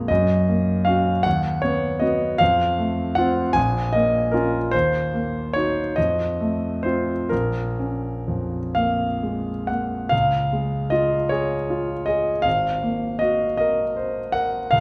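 This is a romantic classical character piece for solo piano, bittersweet and passionate, moving in a slow 6/8 at roughly 41-54 BPM counted in dotted quarters, with a supple rubato. A clear grand piano carries everything from start to finish, sitting up front with an intimate, natural tone and audible action noise, ranging from Ab1 to Bb5. It opens in Bb minor, passing through chords such as Gb6, B/D#, F, Ebm and F7 before settling back on Bbm. At 10.1 seconds the music turns to Db major, and a rich Ab9 colours the phrase at 12.5 seconds. A wet recital hall reverb lends the instrument a sense of space, and the recording is cut from a longer piece, ending at 14.8 seconds.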